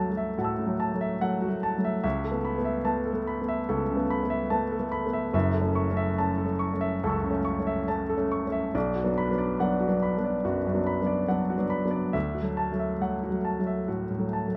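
Intimate and reflective, this 14.6-second cut from a longer neoclassical minimalist piece features a solo grand piano, up front and natural with audible action noise under light reverb, moving rubato at 71 BPM in 4/4 through Dadd9, Aadd9/C#, F#m7 and Bm before returning to Dadd9 at 12.1 seconds, across a range from F#1 to E6.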